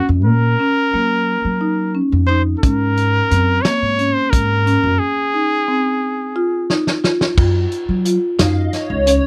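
A dry, close recording with a 1970s studio character frames this driving, bright clip of progressive instrumental band music in 7/8 with a straight feel. A punchy trumpet carries the melody up front with vibrato and a smooth top, while a marimba with rosewood bars plays woody arpeggios and a pizzicato upright bass growls on steel strings. A loose indie drum kit enters at 2.6 seconds, its fat snare, tight kick and dark cymbals sounding saturated and gritty with a rolled-off top. The chords move from Gbmaj7 through Ab9sus4 to Fm7, and during a break the drums play a fill as the trumpet stops at 6.7 seconds. From 8.4 seconds a hollow, flute-like analog pad with a warbling ensemble chorus and slow attack takes a brief solo, holding a sustained, mellow Db5 as the clip ends.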